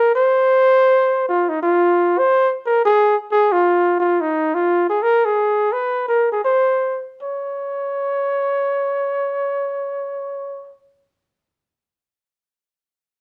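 A bucket-muted trumpet carries this short jazz passage alone and up front, its dark, veiled tone shaded by light vibrato and a smooth top as it moves between Eb4 and Db5 in Db major, tuned to A4 = 442 Hz. The playing is in free time with a relaxed, swinging mood, and it slows between 4.3 and 7.2 seconds before continuing to its close at 10.8 seconds. A moderate studio reverb gives the solo horn a sense of room, and the clip is cut from a longer piece.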